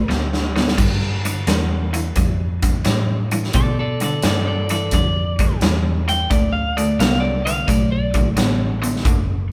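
Recorded live in one room with a moderate large-studio reverb, this short, swaggering cut of blues rock and southern rock rolls along at 87 BPM in 4/4 with a swung feel, opening on a drum fill before settling onto G7 and moving to D7 at 6.3 seconds. A big, up-front rock kit with a punchy kick, medium-tuned snare, hi-hat and bright crash cymbals plays alongside a double-tracked, overdriven rhythm guitar riff treated with spring reverb, while a dark, round, foam-muted fingered bass sits underneath. Over the top, a slightly broken-up, compressed lead guitar plays a raunchy melody until 8.3 seconds.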